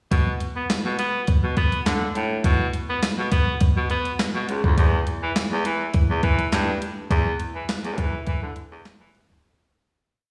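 A straight, mid-tempo boogie beat at 103 BPM in 4/4 drives this short early-eighties boogie funk piece in B minor. The beat comes from a clean, sampler-style 12-bit drum machine, with a thumpy kick, a medium-tuned snare layered with handclaps, and hi-hat, all set up front, overdriven and touched with slapback echo. A clear baritone saxophone carries the low end with a fat, syncopated boogie bass line, played punchy and up front with vibrato and a vintage pop flavor. A jingly acoustic tambourine joins at 0.7 s in the background, marking the backbeat with a small-room sound and its own slapback echo. The piece plays as a funky, danceable breakdown, heard as if through a live venue's PA with light hall reverb, and it fades out from 7.1 s to its end at 9.4 s.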